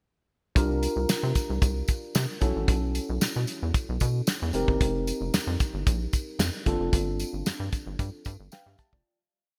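A dry, damped drum kit with a tight kick sets a straight, mid-tempo boogie beat at 113 BPM in 4/4, with a jingly tambourine on the backbeat and a rubbery, up-front square bass driving a fat syncopated line with muted ghost notes. Over this slick, danceable early-eighties boogie funk breakdown, a worn, slightly out-of-tune tine electric piano bathed in lush chorus holds rootless chords through C9sus4, B9sus4, F9sus4 and G9sus4. The bright 1980s-style digital production carries light reverb, and the whole piece fades out from 6.9 s, ending on an electric piano fill at 8.3 s.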